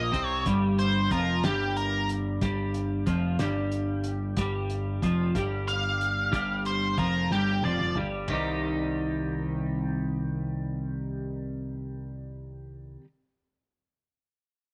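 Mysterious and trippy, this psychedelic rock excerpt in C minor moves at 61 BPM in a straight 6/8, where a bright, twangy twelve-string electric guitar carries a flanged, double-tracked riff over a growling overdriven bass and a muffled, cloth-damped drum kit with a fat snare and dark cymbals, while a dark octave-fuzz lead guitar with slapback echo cuts in with short melodic bursts, a drum fill at 7.3 seconds leads into a shift from Fsus2 to C minor at 8.3 seconds, and the drums stop at 8.4 seconds as the guitar and bass carry on in a small, lightly reverberant room.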